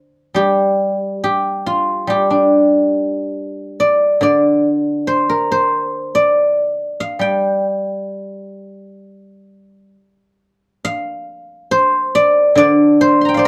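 Elegant and contemplative, this short passage cut from a longer piece presents traditional Chinese plucked-string music for a single guzheng. Played with fingerpicks, the acoustic guzheng sounds mellow yet silvery, its notes ringing out up front in the mix across a span from D3 to C6. The phrasing moves in a free, rubato feel within a four-beat metre, unhurried and reflective. A moderate small-room reverb gives the instrument a close, intimate setting, as if heard live in the same room. Around 10.9 seconds the music turns to a new idea, which carries the solo through to its close at 13.5 seconds.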